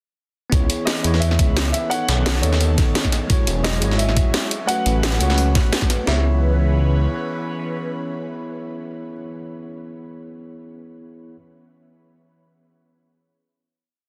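A dense, heavily limited mix with light digital ambience carries this dreamy, soulful liquid drum and bass piece in C# minor at 173 BPM, where a gritty, thumpy breakbeat kit, a layered electronic kit with a cracking snare and a pitched-up, overdriven jungle break in the background drive the drop from 0.5 seconds beneath a deep, rumbling detuned saw bass with long gliding notes, while a bell-like tine electric piano with dub echo, an airy, breathy pad with chorus and phaser, and a dark, boxy grand piano singing a motif through tape echo drift over C#m7, B9, E69 and A69 before settling on a final C#m7 chord at 6.1 seconds that the electric piano holds until 11.4 seconds.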